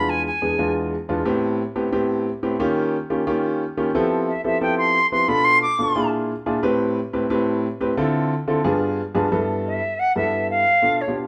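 Jazz with a sophisticated, danceable feel, this short cut from a longer piece sets a pure, vibrato-tinged silver flute in brief tongued phrases over a warm grand piano whose deep bass, long sustain and audible action noise carry rich extended chords like E7b9 and Fmaj9#11 throughout, before the flute steps forward for a solo from 9.3 s, all in a moderate studio reverb.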